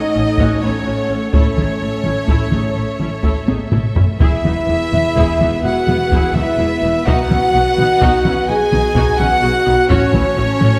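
Cinematic, epic orchestral film score in a dark mood, moving at 84 BPM in 12/8 as a brief excerpt cut from a longer piece, with a bright, focused chamber violin section carrying the melody over a very quiet pure flute and a lush symphonic violin section doubling as second lines. Mellow, distant French horns and a clear background string section hold sustained chords while a clear trumpet section adds stabs, a smooth viola section accompanies, and rich double basses with a very quiet, expressive cello section anchor the low end. Close, dry taiko drums struck with hard sticks drive the whole, breaking into a fill from 3.5 to 4.2 seconds, as the harmony moves from F#m/A through A, E and B and back to F#m/A inside a wet scoring-stage reverb.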